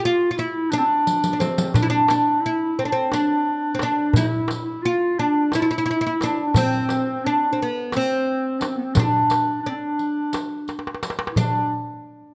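Turkish makam ensemble fragment in D makam huseyni, hypnotic and longing at 175 BPM in a straight 7/8, where a woody, fretless, plectrum-plucked oud with double strings leads the melody up front while a distant, roomy clarinet in classical style carries a second line, the bright jingles of a riq join at 0.4 seconds, drum fills arrive at 1.1 and 10.7 seconds, and a crisp, close and dry metal-shell darbuka enters at 1.7 seconds, recorded with close, detailed microphones and light reverb.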